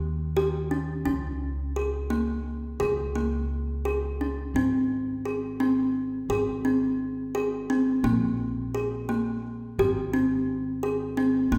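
A bright, woody kalimba sits close and up front, its short, thumbnail-plucked arpeggios carrying a hollow-box tone through a restless, playful piece of contemporary chamber music in 5/8. Beneath it, a pizzicato upright bass with steel strings adds a warm, acoustic low end, and the recital hall's wet reverb makes the whole recording sound as if heard from further back in the room. Cut from a longer piece, the passage moves from Eb7 through Db5 to Ab, drops its harmony for a chordless stretch at 8.0 seconds, and settles back on Ab at 9.8 seconds.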